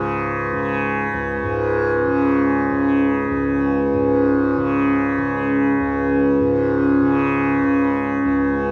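In free time, this haunting, meditative world piece, cut from a longer work and tuned to A4 = 441 Hz, opens on a mellow, buzzing tanpura drone held up front from C#2 to C#3, joined at 1.8 seconds by a glassy, ethereal glass harmonica on C#4 with a slow attack and beating, all set in a dark production with a church reverb of 3.5 seconds.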